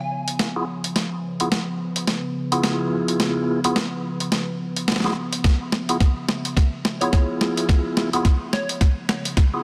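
A lo-fi, gritty sound with light reverb opens this funky, playful glitch hop excerpt at 107 BPM in 4/4 with a swung sixteenth feel, built over a C#7#9 chord as a build-up with a drum fill and filter sweeps on the lead and pad. A nostalgic, warbling tape-like pad holds dark, chorused chords with sidechain pumping throughout, while a punchy, detuned unison lead flashes its catchy melody at the start and returns at 7.0 seconds. A mellow, flute-like tonewheel organ with key click and fast rotary speaker plays percussive stabs up front alongside a compressed, pitched-down boom bap kit of hi-hat and high-tuned snare, and a thumpy electronic kick joins at 5.4 seconds.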